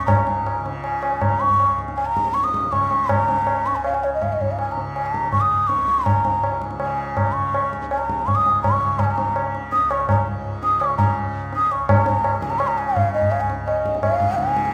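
Hindustani classical music in raga Bhupali, centred on Db, moves at 164 BPM in a straight 4/4 and gathers speed across this short excerpt, with a serene, radiant mood. A bamboo bansuri carries the melody close and up front, its hollow, breathy tone marked by vibrato and tongued notes as it ranges from Db5 to Eb6. Beneath it a tanpura sustains a softly plucked, buzzing drone between Db2 and Db3, shimmering quietly in the background. The low-tuned tabla enters at 0.1 seconds with a ringing, acoustic sound that sits up front yet carries the distance of a large room. A moderate recital hall reverb surrounds the ensemble, and the music shifts into a new section at 11.9 seconds before the fragment ends at 14.7 seconds.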